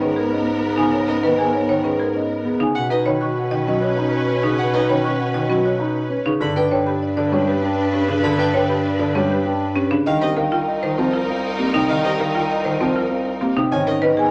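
A brisk 197 BPM pulse in 6/4 drives this hypnotic, propulsive stretch of minimalist classical pattern music, cut from a longer piece and moving through Abmadd9, Bsus2, G and Cm7 before circling back. A marimba played with soft mallets carries the melody, its rosewood tone mellow, round and close-miked, while a second marimba struck with hard mallets spins arpeggios in a buzzing, dark, percussive voice. Beneath them a concert grand piano supplies accompaniment with deep bass, and a bass clarinet anchors the low end with a vintage, solo character. A studio string section holds lush, focused sustained chords with vibrato, and a single bowed violin joins at 1.1 seconds with smooth, even arpeggios set quieter than the rest. A large studio reverb lends the ensemble a wet space, and the sound stays soft at the top.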